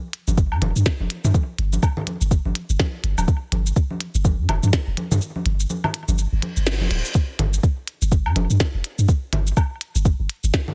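A soft, up-front electronic kick drives this clinical, hypnotic minimal techno cut at 124 BPM in 4/4, its 16ths swung at 59%. Beneath it a deep, punchy sine sub bass with a pitch-drop attack sits equally forward and pumps against the sidechain, while a tape-warm click kit of clicky hats, shaker and a tiny snare ticks along quietly. Overdriven congas and woodblock, re-recorded in a small room and trailed by delay, add a low-level percussive layer. The kick drops out at 5.2 seconds, a faint reverse cymbal rises from 6.4 seconds under a band accent, and the drop lands at 7.2 seconds with the kick restored. The dry, close sound, with little reverb, keeps every click and thump crisp in this fragment of a longer piece.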